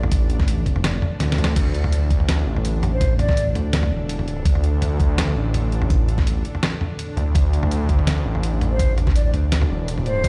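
A dark, detuned saw bass rumbles up front through this tense, cinematic half-time drum and bass excerpt at 166 BPM. An overdriven, knocking electronic kick and a gritty, pitched-down sampler-style kit with a medium-tuned snare, hi-hat, toms and crash drive it along, with a short drum fill at 1.2 seconds. A string-like drone with vibrato and sidechain pumping sits in the background, while a breathy, close-miked concert flute with digital delay appears briefly at 2.9 seconds and returns at 8.7 seconds, all in a big, reverberant room sound.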